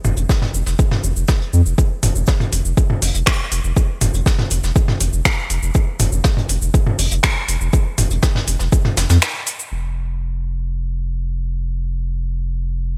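A round analog bass opens this driving, melancholic melodic techno excerpt in straight four, sitting up front with a deep, sustained tone and sidechain pumping, alongside a deep house drum kit of finger snaps, metallic hi-hats, shaker and toms. That kit is overdriven and filtered darker, while a quieter vintage brush kit adds a smooth, medium-tuned snare, hi-hat and shaker, high-passed and pumping in the background. An electronic kick arrives at 0.3 seconds, layered, overdriven and deep at the front of the mix. After a short break, both drum kits fall away at around 9.7 seconds, leaving the bass alone to carry the final stretch. The production is bright in a 1980s digital style and dry, with the electronic drums carrying the character of a large room.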